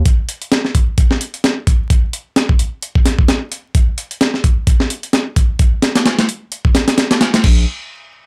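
Vinyl crackle and a dry, close sound frame this raw, swaggering breakbeat fragment, cut from a longer piece and moving at 130 BPM with a swung 16th-note feel. A gritty, compressed sampler-style drum kit sits up front with a thumpy kick, medium-tuned snare, hi-hat and crash in a small room ambience, playing from 0.1 to 7.5 seconds. A deep, thick, saturated sine sub bass with a fast attack and sustained tone lands on Bb1 at the start and returns at 7.4 seconds.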